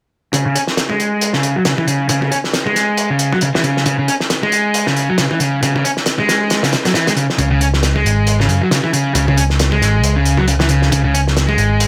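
A recording with light reverb opens this raw, energetic breakbeat excerpt at 136 BPM in C# minor, swinging its 16ths as a crunchy overdriven guitar riff and a cloth-damped, thuddy acoustic kit with a fat snare and tight kick start together at 0.3 seconds. The guitar carries a low-pass filter and digital delay, while the lo-fi, muffled, gritty small-room drums have a rolled-off top. A picked, amped electric bass with tube saturation joins up front at 7.4 seconds, and all three parts play through to 11.9 seconds.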